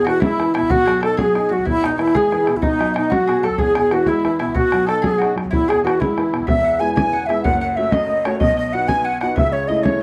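An airy, crisp-edged baroque flute leads this lively Celtic jig fragment in 6/8, with a round, mellow mandolin and a shimmering, reedy musette accordion tucked behind it as second lines, a clear, woody upright piano carrying the accompaniment and a boomy, open bodhran driving the percussion, all set in a wet studio reverb with a dark, warm production and shifting into a new section at 6.5 seconds.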